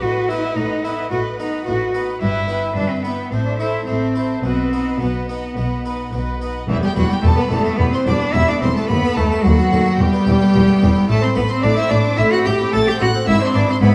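A stormy, dramatic baroque-style concerto movement opens with the whole ensemble sounding at once, a clear solo cello standing up front with vibrato and carrying the melody in a focused bowed voice. Close by, a rich, expressive violin section sings the upper melody while a second violin section traces a smoother line beneath, set back in the background. A brilliant, dry harpsichord with octave strings plucks out the accompaniment close to the ear, joined by a bowed viola section filling the middle. The low end comes from an even cello section and a distant double bass section with light vibrato, grounding the harmony as it moves through dark minor chords toward a tense dominant. A moderate recital hall reverb surrounds the strings, with a faint vinyl crackle and small room ambience adding an aged surface, and the music shifts into a new section at 6.7 seconds before this passage, cut from a longer piece, breaks off at 13.9 seconds.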